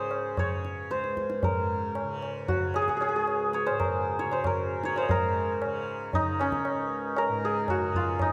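Meditative and serene, this short Hindustani classical excerpt moves in a seven-beat cycle at 115 BPM, with the tempo gradually speeding up across its 8.3 seconds. The santur carries the melody up front, its hammered strings ringing and shimmering in a warm, acoustic tone that spans from Db4 to Ab5 in raga bilaval on Db. Beneath it, the tanpura holds a softly plucked, buzzing drone in the low register, sitting well back in the mix. The low-tuned tabla joins at 0.1 seconds with a short ring and the intimate sound of a small room. Close, detailed microphones and light reverb give the recording clarity, and a new section begins at 5.1 seconds before the passage cuts off.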